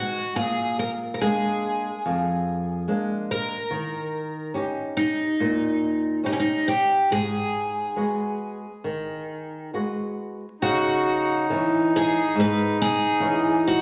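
Fado-style ballad excerpt at a rubato 70 BPM in G# minor, longing and passionate, where a shimmering, octave-doubled picked twelve-string acoustic guitar carries the melody with finger squeak over fingerpicked flamenco guitar accompaniment moving through A#7, D#7 and G#m7, before the key turns to C# minor at 10.6 seconds and a reedy, clear single-reed accordion with dry tuning enters on a second line, all set in a wet large studio reverb with vinyl crackle.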